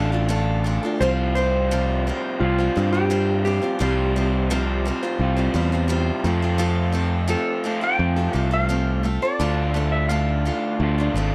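Folk rock with a heartland rock edge, this wistful, reflective passage moves at a straight 86 BPM in 4/4 and is cut from a longer piece. A picked steel-string acoustic guitar with a bright, boxy parlour tone carries the accompaniment throughout, while a raw, double-tracked garage guitar plays a dark, overdriven, lo-fi riff beneath it. The picked electric bass sits round and up front, the most prominent part in the mix. At 1.0 seconds a clean lap steel guitar enters with a dark, fingered slide melody that floats above the other parts until the end at 11.3 seconds. The harmony moves from Dm through a long Csus4 to F before settling back on Dm, all captured in a dry, close 1970s-style studio sound with light reverb.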